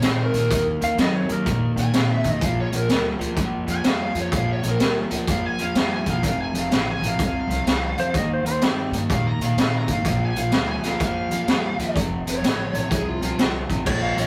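A gritty, swaggering electric blues shuffle opens with a raw garage drum kit up front, its high-tuned snare and boomy kick saturated under a rolled-off top, alongside a bright, crunchy overdriven guitar riff and a woody, growly pizzicato upright bass. A lead guitar through a small cranked amp carries the picked melody with overdrive and analog delay, while a clean, twangy, compressed lap steel slides in with brief second-line phrases at 0.8, 8.0 and 13.9 seconds. This rough rehearsal-room excerpt sits in a wet small room with warm saturation, its chords moving from Eb5 and Eb minor through Bb, F and Eb.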